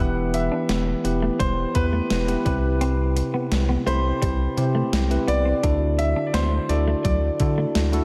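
A 1980s-style pop fragment at a steady, straight pulse, cut from a longer piece, with a mood that is nostalgic yet urgent, moving from Em through Cmaj7 to Dadd9. A bright, brilliant concert grand carries the melody with short sustain, trailed by a diffuse ambient delay, while a bell-like tine electric piano sits up front with clean, direct accompaniment across a broad register. A rubbery, hollow square bass with a nasal, bouncy filter pluck anchors the low end. From 0.3 seconds a clean 12-bit drum machine adds hi-hat, a thumpy kick and a medium-tuned snare with a tape-warm, sampler-style character. Further back, a dark, compressed clean electric guitar plays a fingered riff through lush chorus and ambient delay, stopping at 7.7 seconds, and a plate reverb soaks the whole mix in a dreamy haze.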